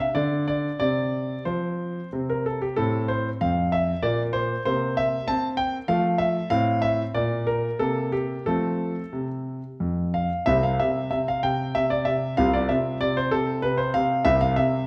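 A classical-period piano sonatina excerpt in F major, elegant and cheerful, moving in a rubato 3/4 at 89-99 BPM, with a solo concert grand piano, clear and smooth with a deep bass and a vintage, up-front presence, playing from C2 to A5 through a dark, warm production bathed in a wet recital hall reverb, shifting into a new section at 10.5 seconds.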